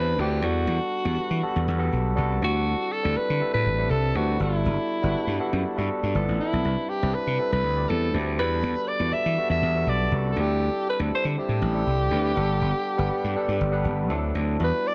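A growling alto saxophone carries the melody up front, its raspy, breathy tone shaded with vibrato and trailed by delay as it sings between E4 and E5. The piece is polished 1980s jazz-funk pop in G major, breezy and urban in mood, moving at 121 BPM in a straight 4/4. Beneath it, a gritty slap bass sits forward in the mix, punchy and overdriven, and is the loudest part. A barky tine electric piano played through a combo amp supplies clean accompaniment with a subtle chorus, sitting a little further back. The harmony cycles through lush extended chords, Em11, D7sus4 and Gmaj9 with a passing G13 and Cmaj9, before landing on D9 at 14.1 seconds. Light reverb gives this short cut from a longer track a small-room feel, and the top end is gently rolled off.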